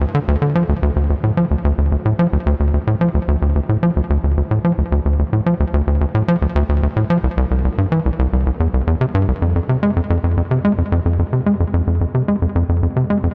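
A steady, straight 4/4 pulse drives this short ambient passage, carried entirely by a lone sequencer bass that plays from start to finish at 13.3 s. Its sawtooth and square-wave tone is tight and punchy, shaped by a filter pluck with a fast attack and a decaying, mellow tail, and it sits up front in the mix while ranging from C2 to Ab3. A delay trails each note, and a huge ambient reverb with a long 7.6-second decay surrounds the part, lending the driving line a hypnotic, mysterious air. At 9.4 s the music moves into a new section where a minor key takes hold, deepening the shadowy mood. Tuned slightly below standard pitch, the recording is a fragment lifted from a longer piece.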